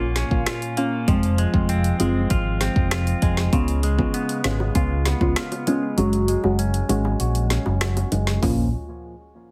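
Heavily squashed, radio-like sound with a light reverb frames this tough, bouncy dancehall excerpt in Bb minor at 98 BPM, which moves from Bbm through Fm, Db7 and Gbsus2 under a filter sweep. A deep, mellow chord stab with chorus, phaser and sidechain pumping sits over a round, amped fingered electric bass, while a bright, twangy clean electric guitar plays filtered arpeggios through a digital delay. Up front, a deep house kit with a woody snare, dark hats and finger snaps drives the groove, its kick dropping out from 6.0 to 8.4 seconds, and tight, high-tuned bongos join softly in the background from 4.4 seconds.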